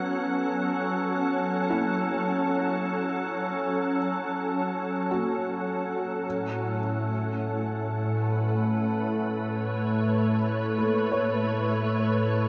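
Serene and spacious, this ambient excerpt drifts at 53 BPM in a straight 4/4, set in F# minor and tuned to A4 = 438 Hz. A soft, organ-like additive pad sits up front with pure, sine-toned sustained chords, its slow attack and long release colored by an ensemble chorus and its own built-in reverb, while a filter sweep moves across it for the full 12.5 seconds. Behind it, a felt-muted upright piano plays mellow, intimate arpeggios in a narrow middle register, its short notes carrying audible action noise and trailing into a diffuse ambient delay. The harmony shifts once, from F#m to Aadd9 at 6.2 seconds. Both parts sound from the start to the end, washed in a huge reverb that places them in a vast, echoing space.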